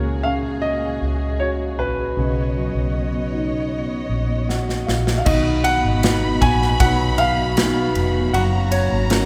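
A tender, hopeful pop ballad at 78 BPM in 4/4, cut from a longer piece, where a clear, present baby grand piano carries the melody over a soft, felt-muted upright piano, lush bowed strings and a round, foam-muted electric bass, all bathed in a cathedral-like reverb. An airy acoustic kit with a tight kick enters at 4.5 seconds, and its drum fill joins a felt piano fill to lead into the second section. At 5.3 seconds a dark violin section adds an expressive second line with portamento, and a twangy, direct-recorded clean guitar picks arpeggios in the background.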